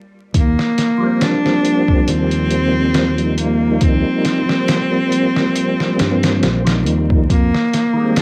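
A pitched-down, muffled sampler-style drum kit with a thumpy kick and cassette-tape grit sets a brooding, hypnotic trip hop groove at 69 BPM with lightly swung 16ths, entering at 0.3 s together with a fingered electric bass with transformer saturation, while an up-front bowed cello with focused vibrato and tape echo carries the melody from 0.4 s and a mellow, dark tonewheel organ with key click, chorus vibrato, tremolo and fast rotary speaker enters at 1.0 s, all moving from Eb6 to Fm7 over vinyl crackle in this short passage cut from a longer piece that sounds like a home cassette recording.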